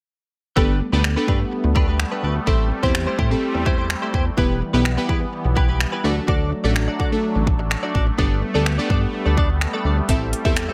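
Dance-pop excerpt with a carefree, summery mood at 126 BPM in G major, built on a Gadd9, Am7, Em, D progression, with every part playing from 0.6 to 10.7 s in a dry, close sound. A punchy, tape-warm house drum kit with metallic hats and finger snaps sits up front beside a glossy, retro pulse-wave synth bass with sidechain pumping. Above them, glassy, airy digital keys with a filter sweep and a sweeping, detuned sawtooth pad, both pumping and chorused, frame a clean, twangy, direct-recorded electric guitar riff coloured by analog chorus.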